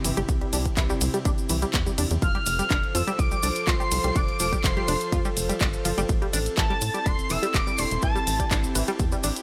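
A driving, emotional progressive house excerpt at 124 BPM opens with an airy, breathy pad and a detuned sawtooth arpeggio, both pumping against the sidechain, over a dark, saturated sequencer bass, layered pop drums with handclaps, hi-hat and ride, and a grainy cabasa in the background, with a punchy electronic kick arriving at 0.3 seconds. A smooth, resonant synth lead with vibrato carries the melody from 2.2 seconds as the chords move from C to F and later A minor. A lush violin section joins high above at 3.2 seconds, tinged with vintage 12-bit sampler grit and delay, all set in light digital reverb.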